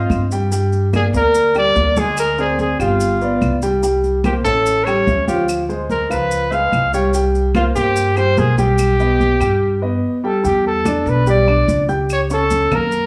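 A clear, forceful trumpet leads this sultry, fiery stretch of Afro-Cuban jazz in a straight four, carrying the solo melody up front with light vibrato and a punchy, roomy tone that sits at a slight distance under a plate reverb. Beside it, a concert grand piano comps with an intimate, natural sound, deep bass, long sustain and audible action noise, while a woody pizzicato upright bass with steel strings anchors the low end. Bright, thin-skinned congas, woody claves with a compressed, saturated edge, and grainy, mellow maracas recorded close and dry fill in the percussion behind the lead. The harmony moves through colorful, shifting chords, and a brief break at 9.6 s leads into a new section at 10.4 s. The whole band sits in a moderate, roomy studio space, and the passage is cut from a longer piece.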